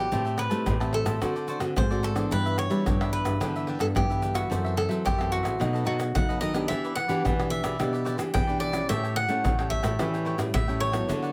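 Sunny and lively, this short excerpt of samba and choro moves at 109 BPM in a straight 4/4 feel. A bright, crisp cavaquinho carries the melody up front, picked cleanly in the range from F#4 to G5, while a second picked cavaquinho fills in the harmony behind it. Two fingerpicked nylon-string guitars with a warm, classical tone share the lower duties, one playing accompaniment and the other holding down the bass line. From 0.1 seconds a percussion section of egg shaker, pandeiro, tamborim and a deep surdo drives the groove with an acoustic, small-room sound. The harmony moves through Am7, D7, G6, F#m7b5, B7, Em7 and A7, and a light reverb gives the ensemble a touch of space.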